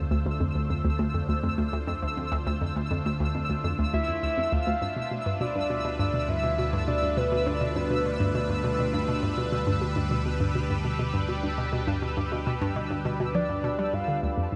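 A steady, straight 4/4 pulse at 102 BPM carries this mysterious, cosmic slice of sequencer-driven space music, where a hollow, bouncy square pluck riff sits up front with tape echo over a pulse-width-modulated analog drone on D2, a lush, detuned unison pad fades in on sustained Dm7 and G7/D chords with phaser, a pulsing gated texture glimmers high above, and a round, dark octave-layered lead with vibrato sings its melody from 3.9 to 9.2 seconds and again at 13.3 seconds, all bathed in a huge ambient reverb.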